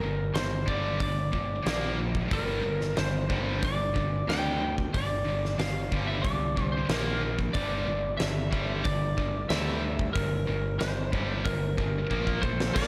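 A twangy, slightly broken-up lead guitar carries the melody through this aggressive, heavy hard rock excerpt in G dorian at 92 BPM in a straight 4/4, its compressed tone coloured by slapback and tape echo. Beneath it, two high-gain distorted guitars sit in the background playing the low riff, one bright with slapback echo and the other scooped. A punchy, direct electric bass anchors the bottom end. A huge arena drum kit joins at 0.4 seconds with a fat snare, punchy kick, hi-hat and crash, sounding roomy and distant yet up front with a rolled-off top, and it plays a fill from 12.1 seconds. In the closing moments a lo-fi, overdriven second lead guitar slips in behind, and at 12.7 seconds a very quiet, gritty tonewheel organ adds thick sustained chords with key click and a slow rotary swirl, all within a big arena sound and a moderate concert hall reverb.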